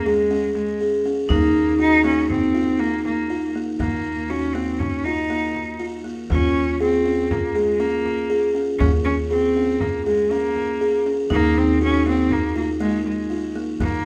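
A buzzing, woody kalimba sits up front with ringing arpeggios, while a clear, biting cello carries the melody with light vibrato in this urgent, hypnotic piece of contemporary chamber music in 5/4 at 120 BPM, cut from a longer work. A metallic vibraphone struck with hard mallets adds a second line, and a dark, thumpy pizzicato upright bass anchors the harmony as it alternates between Bbm7/Eb and Ebsus2. A deep frame drum played with soft hands stays in the background, and the whole ensemble sits in a moderate recital-hall reverb.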